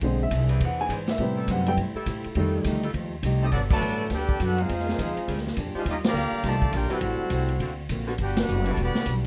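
A woody upright piano opens this energetic big band swing passage over thumpy gut-string pizzicato bass, a punchy swinging drum kit, a boxy picked acoustic guitar in the background and a clear saxophone section holding sustained chords, before a mellow, distant trumpet section takes the melody at 3.4 seconds with a smooth, lightly vibrato trombone section on a second line, and the brassy band hits accents at 3.7, 6.0 and 8.3 seconds in a close, detailed and nearly dry sound.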